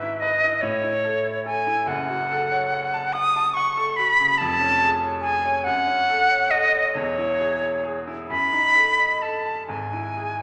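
Yearning and solemn, this romantic classical fragment for flute and grand piano moves in a slow, rubato 6/8 at about 42-49 BPM (dotted quarters) in C# minor. The airy, close-miked concert flute carries the melody up front with expressive vibrato and a soft attack, reaching from C#5 to D#6. The brilliant, short-sustained grand piano sits well beneath it in accompaniment, its harmonies passing through F#m and a closing rootless C#m/G#, all bathed in a recital hall reverb.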